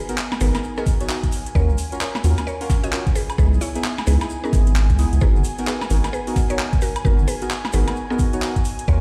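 A swung two-step garage groove at 131 BPM in G# minor bounces along as the garage kit's cracking snare, handclaps, metallic hi-hats and woodblock enter at 0.1 s, a grainy tube shaker sits behind them, the thick saturated sine sub bass joins up front at 0.4 s, and a knocking, tape-colored electronic kick lands at 0.9 s. Over this soulful excerpt, dark, detuned chord stabs with chorus and delay and a woody, round mallet-like synth pluck carrying the melody move through G#m9, D#m9 and C#m9, while a vintage, warbling analog pad breathes with sidechain pumping in the background. The sound is dry up close, yet heard through a big sound system in a bare stone room.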